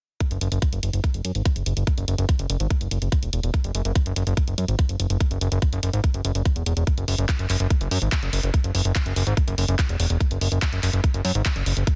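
Psychedelic trance at 144 BPM in straight 4/4, intense and hypnotic, this short excerpt drives a tight, up-front electronic kick with studio reverb from 0.2 seconds alongside a layered garage kit of handclaps and hi-hat, while a fat, nasal, detuned sawtooth-and-square analog bass, saturated and evolving, pushes forward between E1 and F#2 over digital ambience in a dense, heavily limited modern master.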